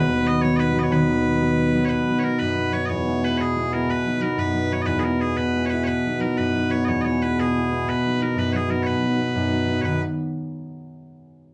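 Celtic folk in a rollicking, cheerful 6/8, cut from a longer piece, where loud, piercing bagpipes carry a continuous, bright melody up front while a thumb-plucked concert harp supplies ringing, warm accompaniment beneath, the pair heard from further back in a reverberant studio as the harmony sways between B and E chords.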